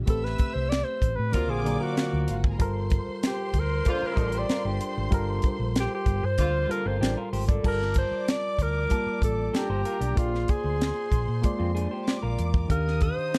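Lush 1970s-style soul with a smooth, bittersweet mood, led by a breathy alto saxophone solo up front through the first 7.6 seconds over a tight funk drum kit with a high-tuned snare, a round, punchy hollow-body bass, and a barky, lightly overdriven reed electric piano, while a lo-fi, slightly broken-up electric guitar riff enters at 1.5 seconds, a distant horn section adds tape-echoed stabs, and a woody, bowed studio string section carries a second line beneath a dark, dry production.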